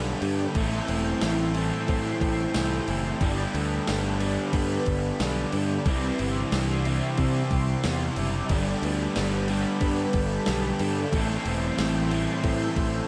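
Rock in a shoegaze and dream pop vein, wistful and hazy at 91 BPM, where a gated 80s digital drum machine with a thumpy kick and gated-reverb snare and a bright, growly picked bass carry a Gadd9, Am7 and Cadd9 progression, while a crunchy double-tracked overdriven guitar riff, a raw garage guitar riff drenched in chorus and a mellow clean electric riff with reverse reverb sit in the background beneath a lush, detuned sawtooth pad with phaser and tremolo, a very quiet, shimmering twelve-string acoustic picks woody arpeggios, and a distant, jingly tambourine enters at 1.2 s, the production dark with light reverb.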